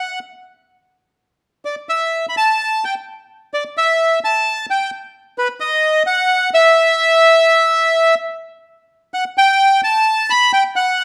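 A reedy, bright bandoneon plays alone and up front in this melancholic, sultry tango fragment in E minor, moving with a rubato feel around 128 BPM in 4/4 through the range B4 to B5, shifting into a new section at 8.7 seconds and set in a moderate large-studio reverb.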